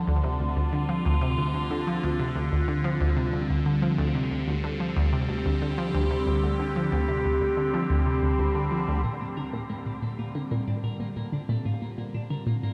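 Drenched in a huge ambient reverb and softened by cassette tape, this luminous, expansive piece of sequencer-driven space music moves at 92 BPM in a straight 4/4, shifting from Dm7 to Bb6. A round, sawtooth analog pluck with a fast, decaying attack carries the riff up front through chorus and delay, while an evolving wavetable pad morphs alongside it in sustained sine-toned chords, phased and glittering with shimmer reverb. At 9.0 seconds a filter sweep moves across a synth arpeggio sound, and a faint, twangy twelve-string electric guitar enters with clean, picked, compressed arpeggios trailing delay and shimmer, running until this fragment of a longer piece is cut at 12.7 seconds.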